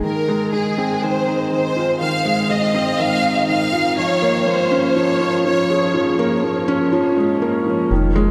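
Soaked in a huge, dreamy reverb, this moving, hypnotic piano and strings electronica cut from a longer piece builds at 122 BPM over Fm7 and Bbm7, with a soft, felt-muted upright piano riff and a round, deep, dark analog bass under a rich, expressive violin section whose bowed, vibrato-laden melody drifts through an ambient delay until it stops at 5.9 seconds.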